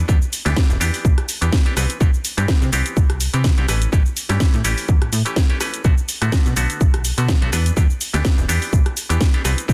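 A twangy, nasal clav with phaser and gritty 12-bit sampler character opens alongside a snappy, metallic FM slap bass pushed up front with tube saturation, both pumping against the punchy, tape-warm electronic kick that arrives at 0.1 seconds with a house kit of hi-hat, rim click, shaker and a cracking, softly clipped snare, giving this short, dry, densely limited filtered disco house excerpt at 125 BPM a nostalgic, funky swing as it moves through Em7, Cmaj7, A7 and Bm7.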